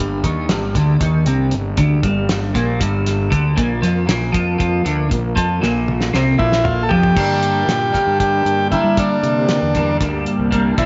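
A phased, double-tracked twelve-string electric guitar riff opens this dark, trippy psychedelic rock fragment in 7/8 over fuzz-overdriven fingered bass and a very quiet, flute-like tonewheel organ holding sustained chords through a slow rotary speaker, with a thuddy, cloth-damped drum kit with a fat snare entering at 0.2 seconds and rolling into a fill before a buzzy, up-front combo organ melody with slapback echo arrives at 6.4 seconds, all set in a moderate echo-chamber reverb with a muted, rolled-off top.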